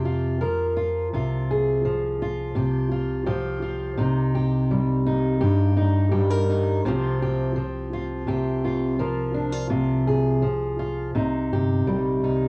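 This short excerpt of acoustic folk opens with a fingerpicked steel-string acoustic guitar and a fingered electric bass sounding together from the start, at an unhurried 84 BPM in a straight 4/4. The guitar sits up front with a dark, auditorium-sized body, carrying the accompaniment across its range from G2 to Bb4, colored by cassette tape and plate reverb. Beneath it, the bass adds a round, amped low end between G1 and G2, a little quieter than the guitar. The harmony moves from a Bb5 through Fmadd9/C, Cm, Fsus2/C and Fm/C before settling back on Cm at 11.1 seconds, giving the passage an intimate, haunting cast. The whole excerpt carries the close feel of a home cassette recording, with small room ambience and moderate studio reverb, before it is cut off at 12.5 seconds.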